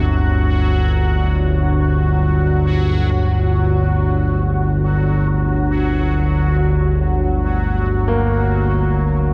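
A cavernous, dark ambient drone steeped in a cathedral-like reverb, where an up-front analog drone of detuned sawtooth and pulse-width-modulated pulse waves with subtle chorus sustains low beneath a bubbling, resonant stepped-filter texture and a very quiet, clear concert grand piano playing arpeggios over a Gmmaj7 chord, all in free time through this 9.3-second fragment of a longer piece.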